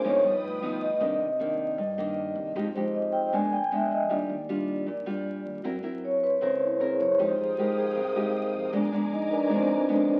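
Wistful and melancholic, this bossa nova clip from a longer piece moves at 156 BPM in C minor, with a mellow, ringing vibraphone played with soft mallets and fast motor vibrato taking the solo up front throughout. Beside it, a full-bodied, fingerpicked nylon-string guitar with audible finger squeak carries the accompaniment, while a woody, thumpy pizzicato upright bass sits in the background. A lush, bowed symphonic string section adds soft-attack sustained chords from 0.0 to 1.0 seconds and again from 7.2 seconds, all heard through a large studio reverb and the crackle of a very old 78 rpm record.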